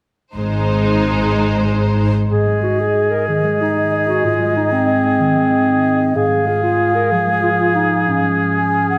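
An up-front oboe with a polished top sings alongside a mellow clarinet and an airy, hollow concert flute from 2.3 s, while a ringing, thumb-plucked harp spreads arpeggios through the texture in this heroic, soaring adventure film-score excerpt at 124 BPM in a straight 12/8, centred on Ab. Before that, from 0.4 s to 2.1 s, the bowed strings carry the opening: an even, vibrato-rich violin melody over a lush, soft-attacked second violin line, an intense, clear viola part, and rich cellos and double basses anchoring the bass. A wet scoring-stage reverb surrounds the ensemble, and the harmony shifts from Ab to Db over Ab.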